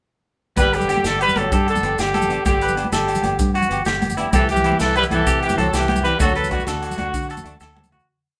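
Recorded as a band playing live in one room with moderate studio reverb, this short, danceable highlife guitar piece in G major moves in 12/8 at 128 BPM with a straight feel. Up front, a warm trumpet with light vibrato and scooped notes carries a hook-based melody, while a raspy, growling tenor saxophone sits in the background with a harmony line mostly in thirds. A twangy clean electric guitar plays a fingered ostinato of arpeggios, and a dark semi-hollow electric guitar strums upper chord shapes further back; beneath them, a round, foam-muted fingered bass plays a syncopated figure. The vintage drum kit has a punchy kick, a medium-tuned snare and a rolled-off top in a 12/8 groove, joined by very quiet ringing agogo bells holding the bell time line, plus bright, high-tuned congas and grainy maracas in evenly spread patterns. The chords move from G to C at 4.3 seconds and to D at 6.2 seconds, where the fade-out begins, and a drum fill arrives at 7.6 seconds to close the piece.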